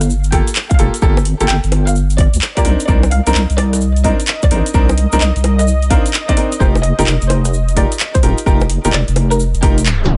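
Soulful and moody, this two-step UK garage cut moves at 129 BPM with a swung 16th-note feel over Gm9, Cm9 and F9sus4 chords, driven by a deep, detuned wobble bass with chorus sitting up front beside a punchy electronic kick. A house kit adds bongos, handclaps, rim clicks and metallic hi-hats in a small room, a grainy, saturated tube shaker sits in the background, brilliant, short grand piano stabs sound with digital delay, and an earthy chamber violin section carries the bowed melody with light vibrato. A smooth, warbling analog pad pumps softly behind it all from 3.4 s, and a band accent at 9.9 s gives way to a tape stop that ends the excerpt.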